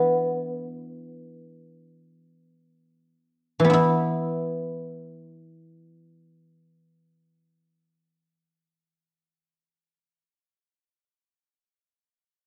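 Longing and contemplative, this short passage of traditional Chinese solo plucked-string music drifts in free time, cut from a longer piece. A lone guzheng carries everything from 0.0 to 10.2 seconds, sitting up front with a silvery, ringing tone shaped by fingerpicks and moving within a modest range from E3 to E4. The opening phrase slows down over its first 3.7 seconds before a new section takes over and carries the music to its close. A moderate recital hall reverb gives the plucked notes a lingering halo in the room. The sound is worn, like an old cassette, with a warbly pitch drift that lends the performance a nostalgic, slightly unsteady quality.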